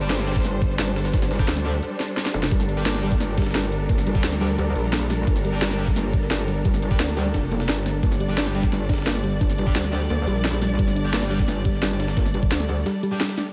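Straight drum and bass breaks drive this dark, mechanical technical drum and bass drop, as an overdriven knocking electronic kick and a cracking, bright-hatted drum kit with ride cymbal sit over a very quiet, gritty sampler-style breakbeat layer, while an up-front metallic wobble bass with chorus and tube saturation pumps beneath distant bowed strings carrying 12-bit sampler grit and sustained minor chords, a double-tracked fuzz guitar stabs through diffuse delay in the background, and after a drum fill at 2.0 seconds a soft, round pluck enters at 2.5 seconds with chorused arpeggios, all before a brief break at 12.9 seconds.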